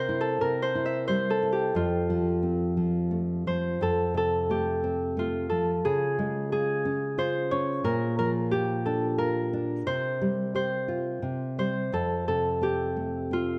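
In a gently rubato 3/4 at about 89 BPM, this lullaby excerpt for children sways with a sleepy, innocent mood in F major. A bright, ringing Celtic harp carries the melody up front, fingerpicked in a range from F4 to E5. Beneath it, a dark, classical nylon-string guitar provides fingerpicked accompaniment from F2 to G4, its finger squeaks audible close up. Both instruments play together from the opening to 13.6 seconds, and the passage shifts into a new section at 3.8 seconds. The harmony moves from C to F, then colours the music with a Db and Bb before a Csus4 and C5 settle home on F. A moderate scoring-stage reverb and a dark, warm production give the piece a cosy, intimate glow.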